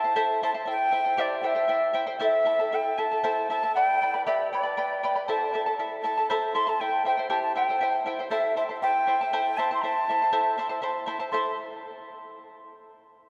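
Andean folk in A minor at 79 BPM in a straight 6/8, festive yet wistful, where a pure, tongued cane quena carries the melody over a fingerpicked charango whose shimmering double strings circle Am, C and G, both bathed in the long, wet reverb of a church or concert hall in this section cut from a longer piece.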